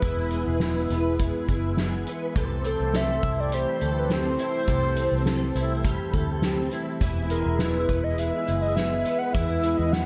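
Dream pop with an ethereal, floating mood, cut from a longer piece, where a warbling, nostalgic lead with chorus, vibrato and digital delay carries the melody over a swirling, detuned analog pad washed in phaser. A shimmering, octave-doubled twelve-string acoustic guitar plays fingerpicked arpeggios with ensemble chorus and delay, while a dark, round, foam-muted electric bass and an up-front soft-mallet drum kit with a fat snare and punchy kick hold the groove. The chords move from E to C6 at 2.4 seconds and back to E at 7.0 seconds, all set in a light small-room reverb with a softened top end.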